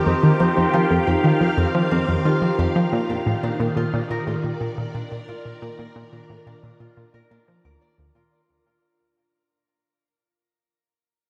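In a straight 4/4 pulse, a tight, detuned sawtooth sequencer riff with a fast filter pluck sits up front and drives this short, luminous stretch of cosmic space music, cut from a longer piece and fading out over its first 8.3 seconds as the harmony moves from Fsus2 to Bb. Swirling vintage string-machine chords with ensemble chorus, phaser and shimmer reverb fill the mid-range beside a ringing, fingerpicked Celtic harp playing delayed arpeggios, while a soft, tempo-synced triangle texture pulses quietly in the background. The echo-heavy mix is bathed in a wet spring reverb, and the harp rings on alone from 8.3 seconds until 10.7 seconds.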